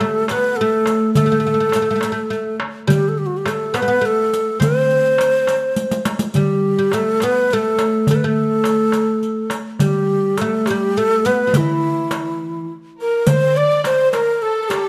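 Captured by close, detailed microphones in a moderate recital hall, this hypnotic, longing Arabic maqam ensemble fragment in 6/8 features a breathy, reedy ney singing the melody with vibrato up front, over a woody, deep oud second line, a crisp, small-shelled darbuka that plays a fill at 5.8 seconds, and a softly played riq with dark jingles, before a stop at 12.4 seconds leads to a smooth-topped, expressive bowed violin section entering at 13.0 seconds.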